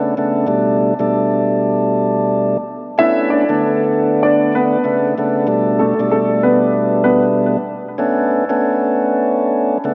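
A percussive tonewheel organ sits up front for the whole 9.9 seconds of this dark, gritty hip hop passage cut from a longer piece. It plays a full, clean accompaniment between B2 and D4, with a third-harmonic percussion bite, audible key click and a stopped rotary speaker, all shaped by high-pass and low-pass filtering. At 3.0 seconds a mellow, woody upright piano enters with the melody, ranging from A3 to E5. Its slightly detuned tone is filtered and trailed by delay before it drops out at 7.2 seconds. The 96 BPM groove in 4/4 swings its sixteenths, with the harmony in B minor alternating between A9sus4 and Bm9, tuned to A4 = 442 Hz. A lush hall reverb with a 2.9-second decay soaks the mix and gives it a dreamy haze.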